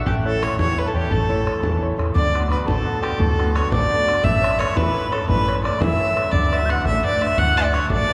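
A lively, rollicking Celtic jig in 6/8, cut from a longer piece, with a bowed fiddle carrying the melody up front, its tone rich and smooth with light vibrato. Above it a mellow, hollow mid whistle plays a second line, airy and crisp in attack with an audible chiff and close-miked presence. A bright, brilliant concert grand piano gives the accompaniment with a slightly worn character and deep bass, while a dark, growly fretless electric bass with a round, amped hollow-body sound anchors the low end. A damped, tight bodhran sits in the background as the percussion. The whole ensemble is bathed in a wet cathedral reverb that gives the sense of a church or concert hall, with the harmony moving from A to D6 as the tune passes into its second section at 2.1 seconds, then on to Aadd9 and back to D6.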